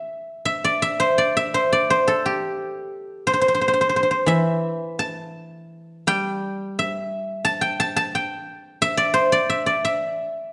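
Set in a moderate recital-hall reverb, this brief cut from a longer piece places a solo guzheng up front, its fingerpicked tone silvery and ringing against the room. The contemplative, longing music is traditional Chinese plucked-string writing in an E jue mode, moving freely in rubato around 82-90 BPM in 2/4. Across its 10.5 seconds the guzheng spans E3 to A5 on its own, tuned to A4 = 442 Hz.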